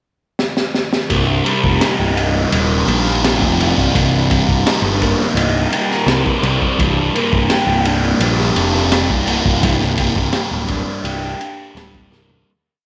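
A crunchy, saturated breakbeat drum fill with a high-tuned snare and dark cymbals opens this trippy, mysterious psychedelic rock piece, and at 1.1 seconds a thick, double-tracked fuzz guitar with a phaser enters playing picked arpeggios alongside a round, overdriven bass riff that is syncopated and up front, all moving from Cm7 to Gm/C before the whole piece fades out from 9.6 seconds into a closing drum fill.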